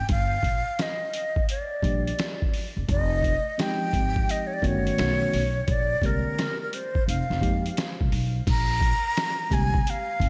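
A breathy metal jazz flute leads this cool, mellow jazz-hop excerpt from the very start, its expressive melody carried by vibrato, a soft attack and lifted highs, sitting up front and trailing a diffuse ambient delay. Beneath it, a gritty, pitched-down boom bap sampler-style kit of kick, snare, hi-hat and crash cymbal rides a swung sixteenth-note feel, compressed and tape-toned, with a thumpy kick and medium-tuned snare that sound re-recorded in a small room and placed up front. A pizzicato upright bass with steel strings adds a woody, growly low end. At 1.8 seconds, a worn, slightly out-of-tune tine electric piano enters through its built-in speakers, laying down clean, warm chords that move through jazzy minor sevenths, ninths, elevenths and thirteenths. The whole mix is soaked in a lush hall reverb for a dreamy haze, shifting into a new section at 8.5 seconds before the cut.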